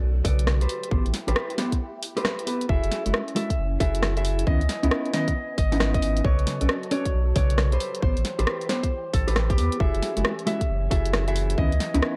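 A deep, round dub sub bass pumps up front beneath a tight layered kick and a garage kit of cracking snare, rim click and warm hats, driving a bouncy, skippy two-step UK garage groove at 135 BPM in F# minor, while a dark, clean electric guitar plays stabs roughened by 12-bit sampler grit, a silky string machine with phaser and ensemble chorus sustains minor-ninth chords in the background, and a ringing acoustic harp enters with a tape-echoed melody at 2.7 seconds, the whole cut from a longer piece and set in a dry, gritty hardware sound with light reverb.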